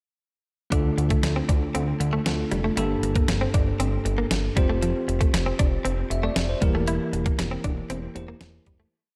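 Dark, lightly reverberant digital ambience surrounds this brief 1980s-style pop piece, urgent yet nostalgic in a single straight 4/4 verse that moves from Dm through Gmadd9 and Fsus2 to Edim. A sampler-style drum machine sits up front with a thumpy kick and a big backbeat from its fat snare, while a thick, nasal sawtooth bass drives eighth notes beneath a bell-like tine electric piano holding close-voiced chords with short fills. A direct-recorded clean guitar picks a muted single-note riff soaked in lush chorus and delay, and the verse begins fading out at 6.9 seconds.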